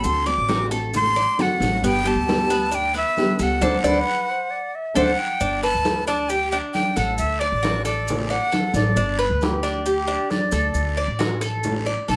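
A breathy, bright jazz flute carries the melody up front over thumb-plucked nylon-string guitar, a picked Cuban tres with metallic double strings, woody pizzicato upright bass, raspy guiro and grainy maracas, with ringing congas joining almost at once in this sunny, danceable Cuban son and guajira excerpt. A distant, airy concert flute with slapback echo adds a second line during a band accent, and the guitar drops out at 5.1 seconds. The second flute returns at 8.7 seconds as the lead flute stops, and the lead comes back for a brief note at 12.1 seconds.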